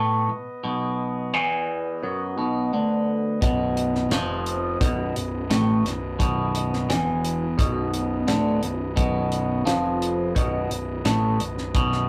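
Psychedelic rock with a hazy, trippy mood, cut from a longer piece: a twangy, clean electric guitar plays a riff up front through a phaser while a tonewheel organ holds clear sustained chords through a stopped rotary speaker. At 3.4 seconds a fuzz-drenched picked bass and a damped 70s drum kit enter, the kit dry and warm with a fat snare, tight kick, hi-hat and rolled-off top. The whole sits in a wet small room with the rough feel of a rehearsal-room recording.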